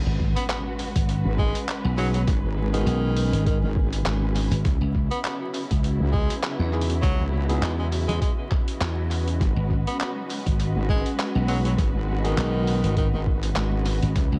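Swaggering and playful, this glitch hop excerpt at 101 BPM in G# minor rides a swung groove of thumpy, pitched-down kick and gritty boom bap handclaps, hi-hat and snare with tape echo under an up-front wobbling sawtooth bass and punchy slap bass, while a bright jazz-style tenor saxophone solos over lush bowed strings with vintage sampler grit, a cloudy granular pad, an electronic impact at the start and barky overdriven electric piano stabs from 2.0, 6.7 and 11.5 seconds, all in an echo-heavy mix dusted with vinyl crackle.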